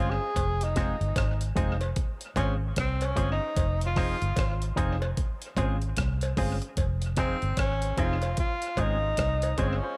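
A laid-back 75 BPM roots reggae groove in F minor swings its sixteenths, with a gritty, pitched-up breakbeat kit of thumpy kick, hi-hat and rim click joining at 0.4 s under a round, foam-muted fingered bass that sits up front, while a saturated cowbell lingers in the background. A breathy tenor saxophone takes an intimate, meditative solo until 6.8 s, its vibrato and scooped notes trailing dub echo, as a clean electric guitar with an envelope filter adds dark, echoing accompaniment and a worn, woody, slightly detuned upright piano drops sustained stabs from a distance. The harmony rocks between Fm7 and Dbmaj7 in light studio reverb, in a fragment cut from a longer piece.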